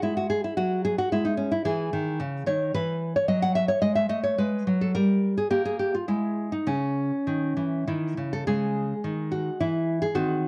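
Heard through the soft grain of cassette tape, a moderate spring reverb with a 1.7-second tail surrounds a lone nylon-string guitar placed up front. This short fragment, lifted from a longer piece, is a serene, radiant baroque-style dance in 3/4 and C# minor, tuned to A4 = 441 Hz, moving at roughly 98-112 BPM with a freely breathing rubato. The fingerpicked guitar carries the whole piece by itself across a range from C#3 to F#5, its tone warm and classical, with finger squeak along the strings. The harmony moves from Eadd9 to C#m, then through F#m13 and a Gm before a brief chordless moment at 6.1 seconds returns to C#m. A new section begins at 8.5 seconds, and the recording ends at 10.5 seconds.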